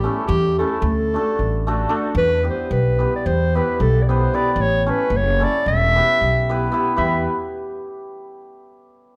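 In a straight 9/8 at 224 BPM counted in eighths, this restless, fiery Balkan wedding-band fragment in E minor sets a smooth-topped, classical-style dark clarinet melody up front over a shimmering, ringing hammered dulcimer and a woody, thumpy pizzicato upright bass on gut strings, all three playing together from the start until about 7.3 s in a moderate recital-hall reverb.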